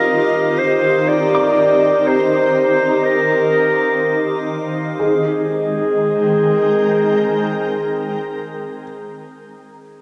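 A mellow, distant clarinet carries the melody in this serene, free-time ambient excerpt in Ab lydian, its roomy classical-style line touched by tape echo and cassette grain until 8.8 seconds. Up front alongside it, a shimmering, ethereal pad holds sustained chords with an octave-up shimmer, detuned sine tones, slow attacks and long releases, thickened by chorus and its own reverb. A felt-muted upright piano, soft and intimate and very quiet, plays arpeggios throughout the full 10.0 seconds. In the background, a glassy texture of drifting overtones glimmers brightly through chorus and reverb until 5.0 seconds, where the harmony moves from Ebmaj9 to Abmaj9. The whole home cassette recording sits in a wet spring reverb, giving the peaceful scene a gentle, hazy softness.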